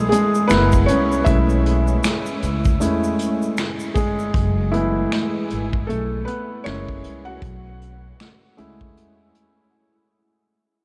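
A mellow, intimate felt-muted upright piano leads this hazy, reflective lo-fi hip hop excerpt at 78 BPM in a swung 4/4, moving through F#7, B13sus4 and F#m11 over woody, growly pizzicato upright bass, a vintage brush kit with punchy kick, hi-hat, snare and finger snaps, and a grainy egg shaker in the background until 4.3 seconds, in a dreamy mix soaked in huge ambient reverb as the passage fades out and the piano plays alone in the break from 9.7 seconds.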